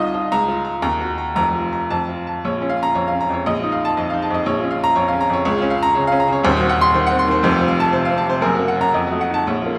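A bright baby grand piano rings through a wet recital hall, heard from further back in the room, though its brilliant, natural tone with short sustain still sits up front. This agitated, passionate classical virtuoso study in 2/4 moves with a rubato feel, the solo piano ranging from deep bass to high treble over dark minor harmonies. Cut from a longer piece, the passage shifts into a new section at 2.4 seconds and presses toward a tense dominant chord near 8.9 seconds.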